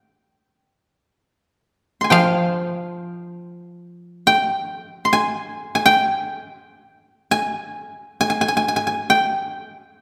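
A wet concert-hall reverb surrounds this short cut from a longer piece of Japanese traditional chamber music, moving in free time with an austere, calm mood. A bright, woody koto, plucked with fingerpicks and placed up front, carries the melody between F5 and C6 throughout, and a second koto, warm and dry, adds a low accompaniment on F3 from 2.1 to 5.5 seconds.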